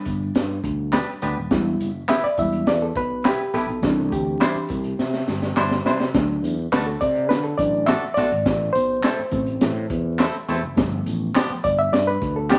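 Vinyl crackle and a moderate large studio reverb color this uplifting, joyful slice of uptempo 1960s-style soul at 104 BPM in D mixolydian, where a reedy, worn, slightly out-of-tune electric piano takes the lead throughout over a crunchy, saturated breakbeat kit with a high-tuned snare and punchy kick, a growly sustaining fretless bass, tube shaker with group handclaps, and bright, clean hollow-body guitar stabs entering at 0.9 seconds, with a drum fill at 5.0 seconds in a passage cut from a longer piece.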